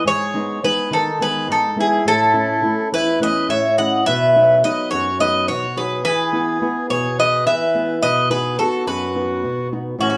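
In a straight 7/8 at 211 BPM counted in eighths, this relaxed, sunny Greek folk excerpt from a bouzouki band sets a bright, metallic, double-stringed bouzouki melody up front over a reedy, airy accordion second line and a dark, boxy, thumb-plucked flamenco guitar accompaniment with audible finger squeak, moving through G#m, A, B and E in a short wet room heard from further back, with lossy compression artefacts.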